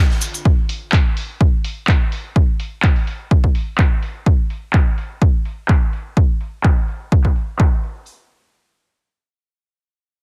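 Heavily compressed and radio-like in a small room, this trippy, gritty acid house fragment in lightly swung 4/4 pairs a punchy, tape-warm analog drum machine of handclaps and hi-hats, its hats and snare dulled by low-pass filters and its drums swept by a filter through the first 8.1 seconds, with an up-front analog kick that enters at 0.5 seconds; both parts fall away by 7.9 seconds.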